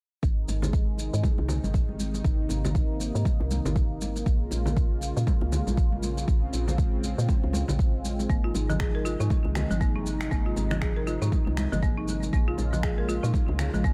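Spiritual and warm, this afro house cut at 119 BPM swings its 16ths over a deep, up-front kick, layered shaker and finger snaps, ringing congas in the background, and a round, dark FM bass and smooth, detuned sawtooth pad with chorus, both pumping, before a bright, dry marimba with hard mallets joins at 8.3 s with delayed, pumping arpeggios over chords moving between Ab and Bbm7.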